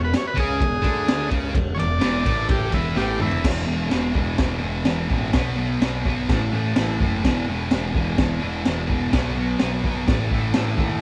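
Swaggering and rowdy, this garage rock cut from a longer piece drives along at 127 BPM in a straight 4/4 in E major, played by a small band live in one room with light reverb. It opens on a buzzy, vintage transistor combo organ solo that sits up front until 3.4 seconds, capped by a drum fill from 3.0 seconds. From the very start, a thick, double-tracked fuzz guitar carries the riff in bright, distorted tone, moving through power chords on E, B and A once the organ drops out. Underneath, a growling picked electric bass adds overdrive and tube saturation, while the crunchy breakbeat kit pairs a punchy kick and high-tuned snare with dark cymbals, its saturated, gritty sound rolled off at the top. The guitar, drums and organ sit close and forward, giving the whole take a raw, immediate punch.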